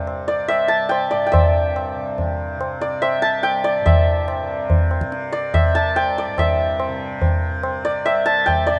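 Meditative and radiant, this short Hindustani classical excerpt is set in raga bhupali on C, moving at 143 BPM in a straight 3/4. The santur carries the melody between D5 and A5, its hammered strings bright and ringing, sitting up front with a shimmering glow. Beneath it a softly plucked tanpura holds a buzzing drone from C2 to C3, warm and quieter in the mix, with its own gentle shimmer. The tabla joins at 0.1 seconds, low-tuned with a short ring, close and dry, and placed as prominently as the santur. A brief opening passage gives way at 1.3 seconds to a longer second section that runs to the end, all cut from a longer performance and held in a light reverb, with the tuning set slightly high at A4 = 442 Hz.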